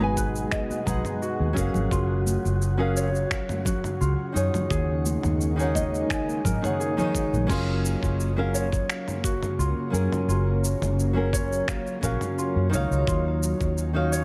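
A lightly reverberant, smooth and relaxed sunset chillout excerpt at 86 BPM, where a thumb-plucked flamenco guitar and a round, foam-muted electric bass sit up front over a lush, detuned sawtooth pad, mellow ringing Celtic harp arpeggios, a breathy wind-like noise texture that drops out at 7.5 seconds, bright congas in the background, and a gritty, overdriven sampler-style drum kit of crash cymbal, finger snaps, shaker and toms joined by a thumpy electronic kick, all moving through G#m9, D#7sus4, F#maj7 and D#m9.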